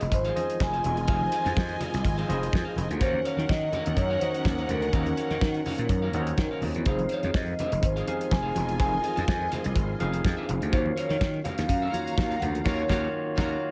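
Danceable and driving, this short disco cut moves in a straight 4/4 over a vamp that alternates Fm7 and Ebm9, with a small room ambience around the band. A mellow vibraphone played with soft mallets carries the melody, its metallic ring shaded by a slow motor vibrato. A damped 70s drum kit sits up front with a fat snare, tight kick, rolled-off top and crash cymbal, while a gritty slap bass growls beside it, overdriven and punchy. In the background, a bright tine electric piano and a clean, picked semi-hollow guitar with harmonic tremolo fill out the accompaniment, while a very quiet tonewheel organ holds sustained chords through a slow rotary speaker with key click. A lush, distant studio string section plays a second line with vibrato, low-tuned congas add compressed, saturated percussion until 12.5 s, and the band hits a closing accent from 12.7 s.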